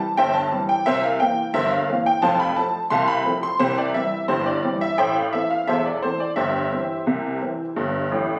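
A detuned, jangly honky-tonk upright piano plays alone and up front in this short, playful ragtime passage, moving in a jaunty straight 2/4 through C, C7, F and A minor before the harmony drops away near the end. Caught on a phone in the room, the vintage piano sits in a moderate club-like reverb, and a quick fill at 8.1 seconds closes the fragment, which is cut from a longer piece.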